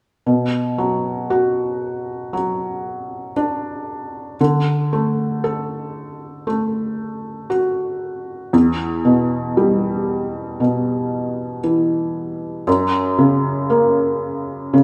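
A slow, straight 4/4 pulse underpins this melancholic, emotional pop fragment, cut from a longer piece, where a felt-muted upright piano carries the accompaniment from 0.3 to 14.8 seconds through Bm, D, Em and F#. The piano sits up front with a soft, intimate tone, thin felt and short sustain, its notes ranging from E2 to A4. A wet stone-room reverb surrounds it, giving the feel of a live performance in a single room.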